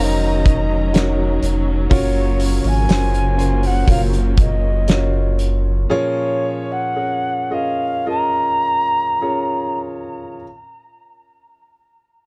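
Longing and emotional, this slow pop ballad fragment sets a distant, pure clay-toned alto ocarina with tape echo and vibrato over up-front grand piano, a deep saturated sub bass, lush bowed strings and a dark violin section in the background, while a loose indie drum kit with a fat snare and punchy kick plays from 0.5 to 5.6 seconds and the music slows down from 1.9 seconds to the close in a small, dark-sounding room.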